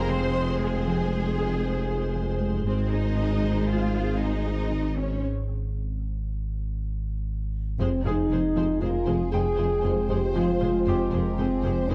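This cinematic hybrid of orchestral and electronic film scoring feels futuristic and tense, moving in an uneven five-beat metre in this short cut from a longer piece. A lush bowed string body carries it: a focused violin section holds the melody on a single high note while a second, smooth-topped violin line and a clear viola section sit distant in the background, and an expressive cello section spans from low bass up into the upper register. Underneath, a woody double bass section, a mellow tuba and an up-front sine-and-triangle sub bass with an added octave stack a deep, full low end, while a French horn section and a moody, wave-folded ambient pad with ring modulation hold sustained chords. A tight, driving synth in sawtooth and square waves, detuned with chorus and phaser, runs very quiet arpeggios with a filter pluck, and a brilliant, slightly worn grand piano adds delayed texture with audible action noise. 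After a break from 5.2 to 7.8 seconds, a very quiet trombone section joins with sustained chords, all set in a moderate recital hall reverb with a dark production.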